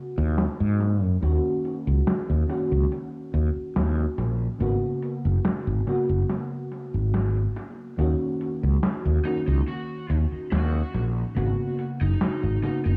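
A woozy, nostalgic haze of cassette tape and echo fills a small room, with light reverb softening the whole mix in this brief vaporwave excerpt. At a slow 71 BPM in G# minor, a mellow FM electric piano sets a round, warbling bed from the very start, its dark tone thickened by ensemble chorus and tape echo as it moves between G#m11 and D#m7. A growly fretless electric bass joins at 0.2 seconds, sitting up front and carrying the low end, while a gated 80s digital drum machine follows at 0.4 seconds with hi-hat and snare, its sampler-style snare blooming into gated reverb and its hats and room muffled by low-pass filtering. Late in the clip, at 9.3 seconds, a lead guitar through a small cranked amp slips in quietly with an overdriven, picked melody, tape echo trailing behind it. The effect is a slightly detuned, faded memory of late-night 80s pop, held in a single drifting section.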